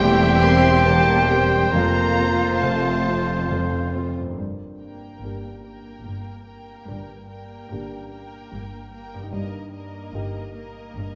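A sorrowful, moving piece of cinematic film score with a rubato feel in three opens on muted, con sordino violins carrying a veiled melody over a lush second violin line, while a clear oboe, an airy, hollow flute and a very quiet clarinet add brief second lines and a distant, roomy French horn section holds sustained chords. The horns drop out at 3.5 s and the woodwinds by 4.0 s, leaving the violins with dark background violas, cellos and double basses, a mellow grand piano accompaniment and ringing, thumb-plucked harp arpeggios. A moderate scoring-stage reverb gives the orchestra a spacious depth across this passage cut from a longer piece.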